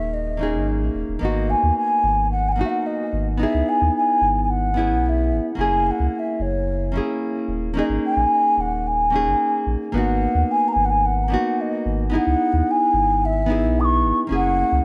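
In a straight 4/4 sunset chillout groove with a warm, smooth mood, a hollow wooden flute carries the melody with pure, tongued vibrato and delay, while a full-bodied fingerpicked nylon-string guitar with tape echo and a round, deep sine sub bass sit up front, all held in a moderate scoring-stage reverb over minor seventh and sus4 chords.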